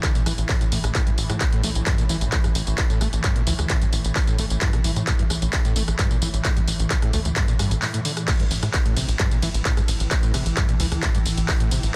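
Driving and relentless, this short cut from a longer peak-time techno track rides a distorted, layered electronic kick and a tight, nasal sawtooth sequencer bass with tube saturation, while a techno kit of warm hats, handclaps, rim clicks, tambourine, ride and crash sits in a large-sounding digital space, a squelchy, resonant acid line with distortion, chorus and tape echo screams in the background over a swarming, detuned ring-modulated drone, both pumping against the kick, and a brief break at 7.8 seconds punctuates the dense, heavily limited mix.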